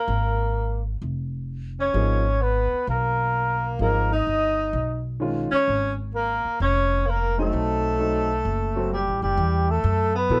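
A bucket-muted trumpet carries the melody from the first moment, veiled and mellow with light vibrato, while a breathy alto saxophone traces a second line beneath it, sounding distant and whispered. This is modal jazz in G# dorian at 129 BPM, swung in 4/4, with a hypnotic, intense mood, cut from a longer piece. A pizzicato upright bass enters almost at once, woody, warm and up front with steel strings. At 1.9 seconds a clear upright piano joins with accompaniment of natural tone, moving through minor add-nine and minor voicings before a B7b9 builds tension. At 9.4 seconds the music shifts into a new section on an Emadd9 chord, all under a light reverb.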